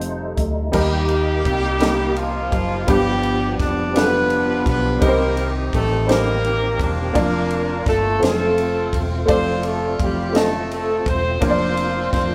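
Soulful and jubilant, this slow gospel piece in 6/8 at 56 BPM has a tight, up-front horn section carrying a smooth, vibrato-laden melody from 0.8 seconds over a woody, slightly detuned upright piano, a fat, lightly overdriven tonewheel organ with key click and slow rotary speaker in the background, a round, punchy hollow-body electric bass, and a polished fusion drum kit with dark cymbals and a high-tuned snare, all played live in one room with moderate large studio reverb over changes from F7 through Eb, G7 and Cm to Bb/F.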